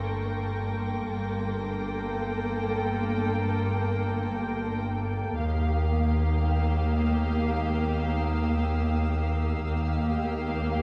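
Muted, con sordino strings open this uneasy, mysterious cinematic fragment together, with a veiled violin melody over a dark second violin line, a viola accompaniment, background cellos and a lush, smooth-topped double bass section. A very quiet, ringing fingerpicked harp and a high muted violin texture shimmer above, the harp dropping out at 9.3 seconds. The harmony shifts from Gmadd9 to Ebadd9 at 5.4 seconds, and everything sits further back in a wet scoring-stage reverb.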